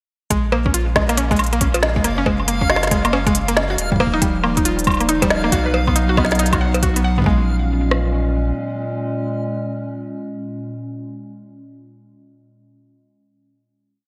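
Melancholic and eerie, this short IDM piece at 138 BPM in Bb phrygian swings a woody, FM-tinged mallet-like synth pluck through a 9-step arpeggio loop drifting against the bar, over a round sine sub bass holding the roots, a deep broken kick-and-rim pattern, and a glitched, ever-changing beat of crisp hats, woody snare, cowbell and woodblock with gated reverb and digital delay, while a reversed, granular swelling texture hovers on a high note in the background and a detuned, warbling tape-like pad enters at 4.1 seconds to carry the final Bbm7 chord from 7.3 seconds to the close at 10.7 seconds, all set in a lush hall with bright 1980s-style digital sheen.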